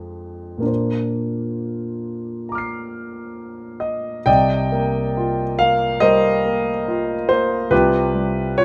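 Nocturnal and mysterious, this short fragment of a longer impressionist classical piece features a solo concert grand piano, played with rubato in 4/4 across a range from C2 to C7. The instrument sits up front and sounds intimate, with deep bass, long sustain and audible action noise, captured by close, detailed microphones in light reverb. Its harmony drifts from Fm6 to Bbadd9, then settles at 4.3 seconds on Cm11 before closing on G7/C at 7.7 seconds.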